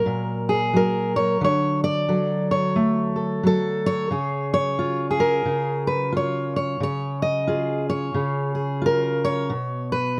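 A fingerpicked steel-string acoustic guitar opens on an F#/A# chord and carries this gentle, peaceful folk piece entirely on its own, cut from a longer performance. It moves at 89 BPM in 4/4, with a lightly swung eighth-note feel that gives the picking an easy, unhurried lilt. The auditorium-bodied guitar has a dark tone and sits up front, captured by close, detailed microphones in a dry space that lets every string ring plainly. The harmony drifts from F#/A# to D at 1.4 seconds, settles on C# at 4.1 seconds, and closes on a bare B5 at 9.5 seconds, spanning from A#2 up to D#5. Tuned slightly high to A4 = 442 Hz, the passage stays calm and intimate throughout its ten seconds.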